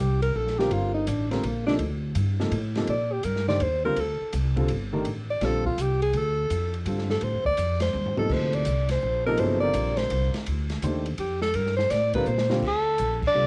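A swung feel at 166 BPM in 3/4 carries this cool, spiritual modal jazz fragment, cut from a longer piece and captured as a home cassette recording with light reverb and small room ambience. A breathy, close-miked alto saxophone takes the solo over a G minor harmony, its vibrato and scooped notes sitting up front with a cassette-tape tint until 12.6 seconds. Beneath it, a pizzicato upright bass with steel strings sounds woody and forward, while a slightly detuned upright piano adds intimate accompaniment with audible action noise and long sustain, also colored by tape. The open acoustic drum kit stays dark and smooth, with shadowy cymbals, a medium-tuned snare and a boomy kick, and it drops in a fill around 7.9 seconds. As the harmony moves to Dm7, a mellow soprano saxophone with a smooth top enters at 12.7 seconds to take the melody, just before a brief accent from the band.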